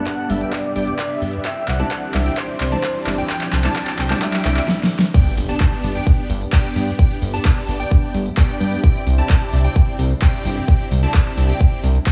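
Euphoric and triumphant, this festival progressive house excerpt in G major at 130 BPM rides a punchy, overdriven electronic kick and a big-room kit of crash, claps, metallic hats, tambourine and a huge snare in light room reverb, which plays a fill through the build-up. Over that build-up, a breathy flute-like synth lead with chorus and dub echo and a dark, mellow baby grand piano with sidechain pumping sit above a very quiet, lush unison pad, while a catchy plucky unison lead with phaser stays in the background, sawtooth supersaw chords carry a filter sweep and a riser enters at 2.3 seconds. The drop at 5.1 seconds lands with an impact, detuned supersaw chords and a fat, saturated analog bass up front, both pumping to the sidechain.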